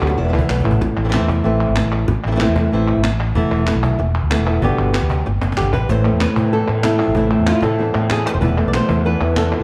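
A brisk, straight 4/4 pulse at 189 BPM drives this fiery, intense flamenco excerpt, with crisp palmas hand claps in a live room and a woody, compressed cajon with faint snares played with soft hands in the background, adding fills at the start and around 5.4 seconds. An up-front fingerpicked flamenco guitar carries the melody from E2 to D5 over a growly, amped fretless electric bass, moving through Am, Esus4 and G. A darker second flamenco guitar sits behind them with fingerpicked stabs at the opening and again from 5.9 seconds, all set in a moderate recital hall reverb with a dark, warm production.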